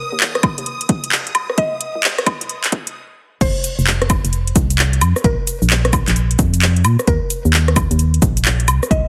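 UK garage in a bouncy, skippy two-step groove at 131 BPM with swung 16ths, this clip opens on lush, vibrato-rich violin-section chords that stop at 3.0 s during the build-up, while a hollow, organ-like FM bass pumps beneath a punchy overdriven kick and an up-front house kit of metallic hats, handclaps, rim clicks, shaker, woodblock and crash, and a woody, chorused mallet-like pluck with tape echo enters at 1.6 s and carries the melody into the drop at 3.4 s, all squeezed into a heavily compressed, radio-like sound with light reverb.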